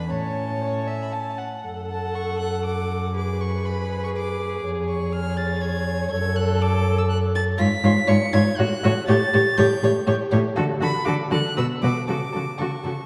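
An up-front cello anchors this lively, cheerful classical-period movement for string quartet, its rich gut-string bass carrying an airy bow sound. Above it, the first violin plays the melody high in its range while the second violin plays an inner line, both close-miked and reedy in period style. The viola fills in the accompaniment from a more distant position, its tone touched with light vibrato. Moving in a quick triple metre, the harmony begins on A, turns to F#m at 1.7 seconds, and later passes through A7, D and Bm before arriving at F#m/C#. The quartet sounds in a wet concert hall with a dark production, and this short passage is cut from a longer piece.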